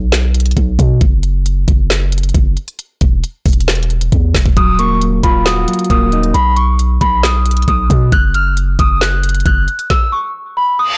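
This trap excerpt at 135 BPM in a half-time 4/4 feel sounds menacing and dark, with a blown-out, overdriven sheen over a digital ambience. It opens on a break where a deep, sine-toned 808-style bass with a fast attack and long decay sits up front alongside an electronic trap kit of knocking kick, woody snare, handclaps and crisp hi-hats. At 4.6 seconds a bell-like, delicate celesta enters high in its range with tape echo, its felt-hammered tone sitting in a boxy small room, while a clean, fingered electric guitar adds dark accompaniment briefly over an Ebmadd9 chord. The guitar drops out at 6.3 seconds as the harmony moves to B, and the harmony falls away at 8.1 seconds before the bass stops at 9.7 seconds. The celesta carries on to the close, where an electronic reverse cymbal sounds at 10.8 seconds as the cut ends.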